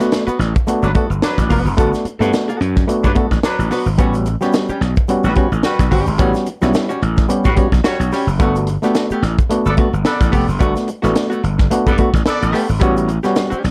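A dark production with a touch of reverb frames this cool funk excerpt at 109 BPM, swung on the 16ths, with chords moving between Gmaj9 and A13. Stringy, mellow clav stabs, a clean, compressed hollow-body archtop guitar picking out accompaniment, and a grainy egg shaker tucked in the background open the excerpt, and up front, a tight acoustic kit with a high-tuned snare and a growly, overdriven slap bass join within the first moments to drive the groove. A warm horn section with light vibrato and a smooth top carries the second line from 0.8 to 12.7 seconds.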